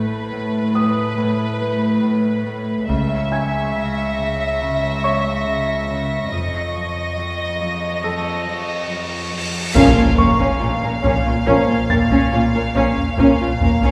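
A straight, slow 4/4 pulse underpins this ominous, uneasy cinematic suspense cue, cut from a longer piece. A rich violin section carries a soft-edged sul tasto melody over a ringing fingerpicked Celtic harp riff, with floating bowed cellos, background double basses and a brilliant baby grand piano with audible action noise, while close, dry taiko hits and a high, pure violin texture enter at 2.9 seconds. A huge, dark cymbal swell builds into an impact at 9.8 seconds, where mellow French horns, distant roomy trombones, very quiet hard-mallet timpani, a shadowy background violin line and violas join the returning taiko for a heavier close, all set back in a lush scoring-stage reverb.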